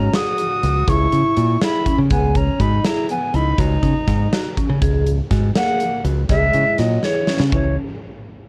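Counted in an uneven 11/8 with a straight feel, this brooding, tense progressive instrumental excerpt is cut from a longer piece. A pure, tongued concert flute carries the melody with vibrato, sounding distant yet up front, while a warm alto saxophone plays a jazz-style second line beneath it. A vibraphone with medium mallets adds metallic, ringing arpeggios coloured by a slow motor vibrato, and a direct, bright fingered electric bass sits up front at the bottom. A huge arena drum kit enters at 0.1 seconds with a boomy kick, a medium-tuned snare, hi-hat and crash cymbal in a hall sound, closing with a fill from 7.0 seconds. The recording has light reverb and the worn, warbling character of old cassette tape, with a wavering pitch drift.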